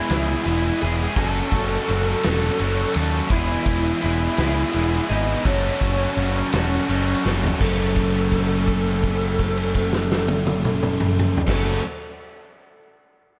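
Brooding and angsty, this quiet-loud alternative rock excerpt in F# minor moves at a slow 56 BPM in 6/8, with a dark, distorted lead guitar carrying a bluesy melody over a bed of riffing guitars: a bright cranked stack guitar, a compressed, very quiet fuzz guitar and a double-tracked high-gain guitar, with the stack and high-gain parts sitting in the background and carrying slapback echo. A growling, overdriven picked bass sits up front, while a loose, roomy indie drum kit with a fat snare, tight kick and dark cymbals sounds distant in a small, lightly reverberant room. A drum fill at 7.2 seconds leads into a held note from 7.6 seconds as the harmony shifts between E and F#m.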